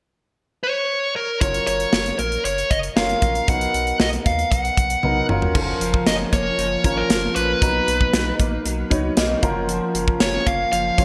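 Bright 1980s-style digital production with a wet plate reverb frames this romantic, nostalgic pop excerpt in F# major at 116 BPM, where a dark, overdriven lead guitar with digital delay sings the melody from 0.6 seconds, joined at 1.4 seconds by an intimate grand piano with subtle chorus and audible action noise, a round sine sub bass, and a punchy, up-front studio drum kit with gated reverb and bright cymbals, before a drum fill ushers in a compressed, clean, direct-recorded electric guitar riff with ensemble chorus at 5.5 seconds, all moving between F#maj7 and Bmaj7.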